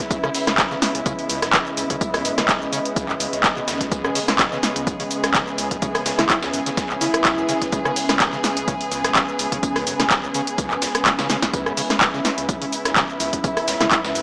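A punchy analog drum machine sits up front in this gritty, trippy acid house excerpt, its overdriven handclaps, hi-hat, rim click, shaker and snare driving the groove, with a short room sound on the snare, claps and hats. Beneath it an overdriven electronic kick and a compressed, sampler-style soul kit in the background, with hi-hat, snare and tambourine, add dusty grit, and the kit's hats and percussion pump against the sidechain with a drum fill at 11.1 seconds. A squelchy square-wave acid bass riffs through a resonant filter sweep, saturated, fast in attack and decaying, with analog chorus and dub echo. Muted chamber strings, bowed con sordino with vibrato, hold dark, veiled sustained chords on C#m7, while an ethereal detuned pad of triangle and sawtooth layers breathes with a moving notch, ensemble chorus and its own reverb, both pumping with the sidechain. A breathy alto saxophone enters at 6.2 seconds with mellow subtone phrases, scooped notes and dub echo, and returns briefly at 13.8 seconds. 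The whole mix sits in a lush hall reverb with a small-speaker character.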